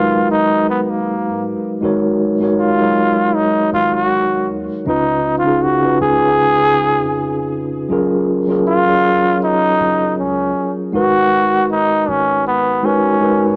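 Contemporary R&B at 79 BPM in G# dorian with a light sixteenth-note swing, this late-night, longing cut from a longer piece drifts through G#m9, C#9 and F#maj7 before returning to G#m9 at 10.9 seconds. A raspy, growling trombone carries the solo melody up front with vibrato and a punchy, brilliant edge, over a mellow tine electric piano that sounds through its built-in speakers. A deep, round 808-style bass sits dark in the background, while the trombone and piano carry a cassette-tape grit and a moderate booth ambience gives the whole a homemade, small-speaker feel.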